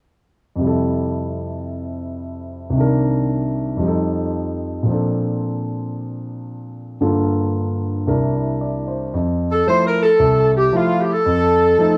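A swung 4/4 groove at 113 BPM carries this joyful, brassy jazz fragment in F major, cut from a longer piece, with a warm concert grand piano up front from 0.6 s, accompanying through Fmaj7, Cm7, F7, Bbmaj7, Gm7 and C7 with a deep bass. At 9.5 s a bright saxophone section takes the melody up front, playing loosely and with vibrato as the harmony returns to Fmaj7 and F7. The sound sits in a moderate large-studio reverb and carries the worn, warbling pitch drift of old cassette tape.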